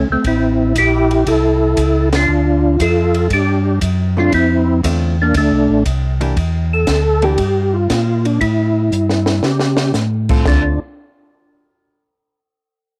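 A swung 4/4 groove at 117 BPM carries this soulful, late-night soul jazz organ trio excerpt in D minor, where a percussive tonewheel organ with third harmonic percussion, chorus vibrato and slow rotary speaker takes the melody over a round, key-clicking tonewheel bass line, a dry compact cocktail kit with dark cymbals, high-tuned snare and punchy kick, and a picked, compressed hollow-body jazz guitar entering at 4.2 seconds, with a band accent at 2.0 seconds and a drum fill at 8.9 seconds, all captured dry on home cassette.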